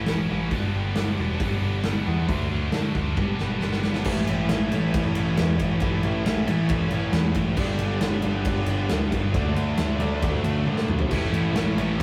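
A big, punchy acoustic drum kit sits up front in this cathartic, anthemic stretch of quiet-loud alternative rock, its bright cymbals, medium-tuned snare and toms ringing in a natural, roomy space. Beneath it, a growling picked electric bass with a warm, overdriven tone carries the low end. A scooped, high-gain guitar plays the riff throughout, joined at first by a compressed, distorted guitar tucked into the background. A drum fill at 3.2 seconds leads into the second section, where a double-tracked distorted guitar enters at 4.0 seconds, also sitting back in the mix, and the compressed guitar returns at 11.1 seconds. The riffs cycle through A, G and D chords, and the whole clip has the rough, live feel of a rehearsal room with a moderate reverb.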